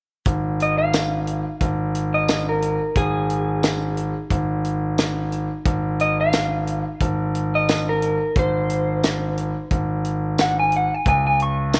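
A concert grand piano holding down deep, warm bass notes and a tight, up-front funk kit of kick, high-tuned snare, hi-hat and tambourine open this rollicking yet laid-back straight-eighth soul blues at 89 BPM, tuned to A4 = 435 Hz, before a slightly broken-up, lo-fi electric guitar through a small old amp enters at 0.6 s with a picked melody and vibrato, the whole mix touched by light reverb and arriving on a Db5 chord at 11.1 s in this short cut from a longer piece.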